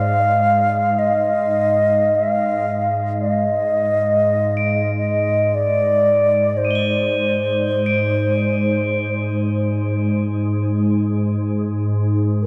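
An airy wooden-headed alto flute leads this peaceful, calm world meditation fragment, its tongued, slightly unsteady melody carrying vibrato up front and trailing a diffuse ambient delay. Beneath it, a pure, full-bodied organ-like pad holds a low drone with slow attack and detuned ensemble chorus. From 4.6 seconds, soft crotales struck with hard rubber mallets add a mellow, bell-like shimmer, all set within a huge, dark reverberant space.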